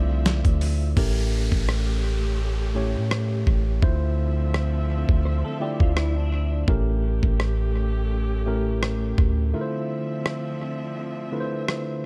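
A dry, echo-heavy mix frames this moody, late-night contemporary R&B excerpt in D minor at 84 BPM, with a lightly swung 4/4 feel and chords moving between Dm9 and A7b9. Up front sit a gritty, overdriven sampler-style drum kit with a thumpy kick, a deep, mellow 808-style sine bass, and a clean tine electric piano heard through its built-in speakers, while a lush, woody bowed string section holds sustained chords and a faint, crystalline FM synth bell glints only in the opening moment. An electronic downlifter runs from 1.0 s, a compressed, fingered clean electric guitar adds arpeggios with chorus and analog delay from 5.3 s, and the bass drops out at 9.5 s for a closing break.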